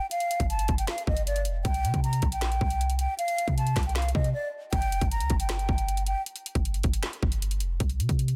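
A dense, heavily limited master in a small room frames this dark, melancholic excerpt of half-time trap hip hop at 156 BPM in G minor, where an airy, hollow concert flute with vibrato and delay carries the melody until 6.2 s over an up-front electronic kit of hard-clipped kick, woody snare, metallic hats and handclaps and a deep, boomy sine 808 bass, with a brief break arriving at 4.3 s.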